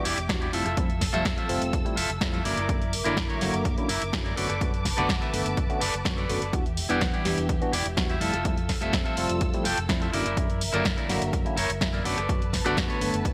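Filtered disco house at 125 BPM in a straight 4/4, this short cut from a longer piece feels nostalgic and groovy, with a bright 1980s-style digital sheen and light reverb. A bright tine electric piano carries the accompaniment through a phaser, 12-bit sampler grit and a low-pass filter, while a dark, woody string section, bowed sul tasto with vibrato, holds lush sustained chords in the background under the same grit and filtering. A clean, picked electric guitar plays a riff, and a round, hollow-body fingered bass anchors the low end, both pumping with sidechain and dulled by the low-pass filter along with the piano and strings. A punchy, tape-warm analog drum machine supplies hi-hat, rim click and snare, with sidechain pumping on its hats, and an electronic kick drum enters at 0.3 seconds. The harmony cycles through Em7, Fmaj7, F#7b13 and Bm7/F#, giving the groove a bittersweet, wistful pull.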